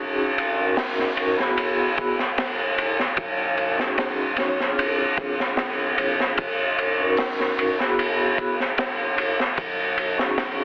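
A slow trip hop groove at 75 BPM in 4/4, with a light swing on the sixteenths, carries this brooding, hypnotic excerpt cut from a longer piece in Eb phrygian. A crunchy breakbeat kit enters at 0.4 seconds and sits up front, its punchy kick, high-tuned snare, hi-hat and dark ride cymbal sounding saturated and gritty with a rolled-off top. A vibraphone played with soft mallets supplies the harmony from the start, metallic and airy with a medium motor vibrato, its tremolo and tape echo adding a ringing haze. Beneath it, a soft dub sub bass hums deep and round in the background, a sustained, mellow tone. The chords cycle through Ebm7, Eadd9, B6 and Bb7 before returning to Ebm7, while light reverb, small room ambience, vinyl crackle and a heavily compressed, telephone-like radio sound give the whole mix a lo-fi, dusty character.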